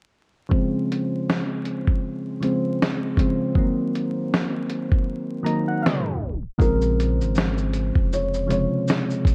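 A swung sixteenth-note groove in 4/4 comes from a compressed, sampler-style drum kit with a thumpy kick, a medium-tuned snare, hi-hat and shaker, its muffled sound re-recorded in a small room and placed up front. This short lo-fi hip hop excerpt feels hazy and reflective, with soft, round electric-piano-like synth keys carrying chords from Dbmaj7 to Cm7b5 through chorus, a low-pass filter and a filter sweep. At 5.1 seconds the kick is muted while the keys play a fill, and a tape stop follows at 5.8 seconds. From 6.6 seconds, over Bbm7, a deep, sustained sine sub bass enters alongside a brief melody on felt-muted upright piano, intimate and boxy with audible action noise, low-pass filtering and analog delay. The production is dark, with light reverb and vinyl crackle.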